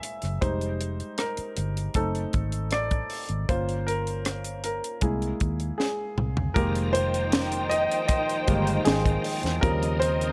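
Lush 1970s-style soul with a smooth, silky mood, heard in a short slice from a longer piece. A clear concert grand piano sits up front from the start, carrying the accompaniment with a worn, natural tone, deep bass and short sustain, while a tight funk drum kit plays dry and close with a high-tuned snare, tight kick, hi-hat, rim clicks and toms. A vintage muted fingered electric bass enters at 0.2 seconds, dark, round and foam-muted through an amp, under minor-ninth, diminished and altered dominant harmony. A drum fill at 5.8 seconds leads into a new section at 6.6 seconds, where a muted studio string section adds a veiled, con sordino second line with soft-attack bowing and vibrato, set distant. A tonewheel organ also enters there, holding piping, scooped chords in the background with light overdrive, key click, chorus vibrato and a slow rotary speaker, all within a light reverb.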